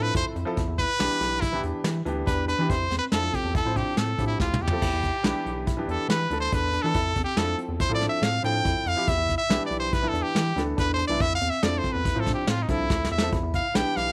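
Tense and brooding, this progressive instrumental excerpt cut from a longer piece moves in a straight 5/4, with a brilliant, forceful trumpet up front soloing throughout in a jazz style, its scooped notes and light vibrato riding over a harmony that sways between Fmaj7 and Em7. A clear concert grand with deep bass supplies the accompaniment while a clean tine electric piano plays arpeggios in the background through its built-in speakers, and a rubbery, hollow square-wave bass with ring modulation and a filter pluck bounces underneath. A vintage brush kit with a punchy kick, recorded in a small room, enters at 0.1 seconds and adds brief fills at 4.4 and 12.9 seconds, all set in light reverb and studio ambience.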